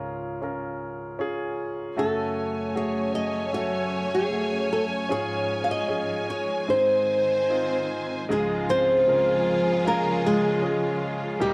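Heartfelt and tender, this short pop excerpt sets a bright, fingerpicked flamenco guitar melody with audible finger squeak up front over an intimate concert grand piano accompaniment with deep bass and audible action noise, as a lush, woody string section enters with sustained chords at 2.0 seconds and a biting cello section adds a second line in the background from 8.3 seconds, all within a moderate spring reverb.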